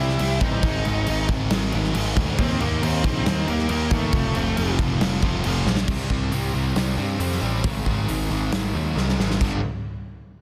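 Densely limited and lightly reverberant, this brooding, cathartic quiet-loud alternative rock excerpt at 137 BPM in 4/4 sets a dark octave-fuzz lead guitar melody with digital delay (until 4.8 s) over a bright, double-tracked fuzz guitar riff, a very quiet sludgy distorted guitar riff that stops at 5.9 s, a growly, up-front fuzz picked bass and a big, punchy rock drum kit with bright cymbals, whose fills at 5.7 s and 9.0 s mark the turns through a chord cycle of C, Ab5, Eb5 and F before moving on to C5, Ab5 and G5.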